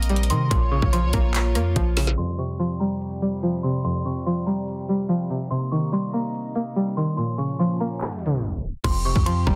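Trap hip hop at 144 BPM in a half-time feel, melancholic and brooding, where a bell-like celesta melody floats over a twangy, chorused resonator pluck and soft bowed symphonic strings while a trap kit with a hard-clipped kick, woody snare and metallic hats drives beneath a boomy 808 bass that drops out after 2.2 seconds and returns at 8.8, with a filter sweep through the middle, the kick muted from 7.2 seconds, and a tape stop and faint reverse cymbal leading into the return in this dense, heavily limited cut from a longer piece.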